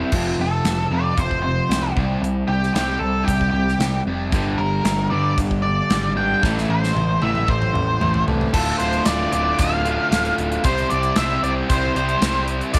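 Driving straight 4/4 at 114 BPM, this gritty, brooding classic rock excerpt in D minor moves through a chord sequence of F, C5, Gm and Am before settling onto Dm and C at 8.5 seconds. A gated 80s drum kit sets the pulse with a punchy kick, medium-tuned snare, bright cymbals, hi-hat and toms, its polished, airy sound carrying a big gated room character, and a drum fill runs from 6.4 to 8.5 seconds. Two overdriven guitars, one a hollow-body semi-hollow tucked into the background, churn out the riff together alongside a growling picked bass with its own overdrive. A double-tracked crunchy guitar sits in the background, briefly at the opening and then again between 4.3 and 8.5 seconds. Up front, a dark octave-fuzz lead guitar carries the melody from 0.4 seconds, its distorted tone ringing out over the riffing. Light reverb and a small room ambience frame the ensemble.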